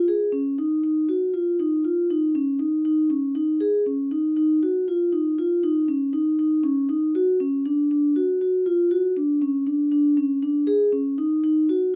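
A lone vibraphone played with soft mallets and the motor off sits up front from the start, its mellow, ringing tones staying between C#4 and G#4 through a restless, hypnotic fragment of contemporary instrumental music at 119 BPM in a straight 7/4, tuned to A4 = 438 Hz and set in a moderate studio reverb until it stops at 11.9 seconds.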